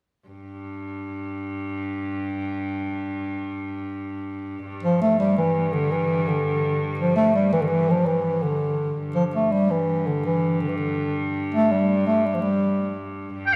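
This medieval dance in a straight 6/8 has an ancient, rustic mood and is cut from a longer piece. A single bowed, fretted viola da gamba opens at 0.3 seconds with a low drone, its rich gut-string tone reedy and ringing with light vibrato, heard from a distance in period style. At 4.8 seconds a mellow bass clarinet takes the melody, close-miked and up front, phrased in a jazz style with a light vibrato of its own. Only at 13.5 seconds does an edgy shawm appear, briefly sounding a high second line in folk style with vibrato and scooped notes. The whole performance sits in the wet reverb of a church or concert hall, giving it a spacious, echoing setting.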